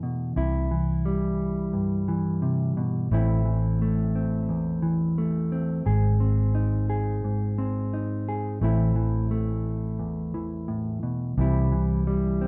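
A mellow, clean electric guitar sits up front, its dark, fingered tone carrying the accompaniment from start to finish in this tender, intimate acoustic folk-pop ballad. Beneath it, a vintage muted electric bass adds a round, punchy foundation, its foam-muted, amped sound staying low under the guitar. The harmony moves unhurriedly through C, A minor and A-flat before returning to A minor and settling back on C near 11.4 seconds. Light reverb and a dark, warm production give the pair a close, hushed atmosphere. Both parts play together throughout this brief passage, which is cut from a longer piece.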